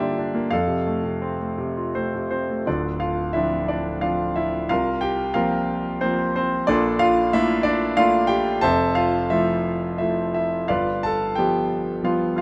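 Sunny and hopeful, this short excerpt of lyrical classical solo piano moves in a flexible, rubato 3/4 at roughly 79-95 BPM in D minor, tuned slightly high to A4 = 441 Hz. A clear, natural concert grand sits up front with a deep bass reaching down to D1 and a range extending up to A5, opening on Gm7 and F before a longer passage from 2.7 seconds drifts through Dm7, C7sus4, Bbmaj7 and Fmaj7 to settle on G7. Close, detailed miking and a light reverb keep the instrument's tone intimate and present.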